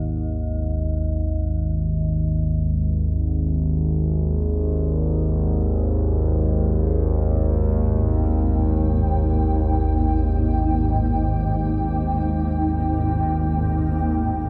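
Dark ambient drone in free time, this cut from a longer piece feels unsettling and ominous, tuned to A4 = 443 Hz and resting on a G#sus2 chord. An up-front analog drone holds the low register from the start, its evolving sawtooth and pulse-wave tone shaped by pulse-width modulation and thickened with chorus, with slow attacks and long releases. Behind it in the background, a quartz singing bowl rings with a pure, meditative tone and slow beating, struck with a wooden striker and fading out over the first 14.0 seconds. At 7.2 seconds a granular cloud pad enters up front with sustained chords, its detuned unison triangle voices blurred and cloudy, a moving notch drifting through the sound, and its own built-in reverb. The whole production is dark and warm, set in a huge ambient space with a reverb tail of 8.4 seconds.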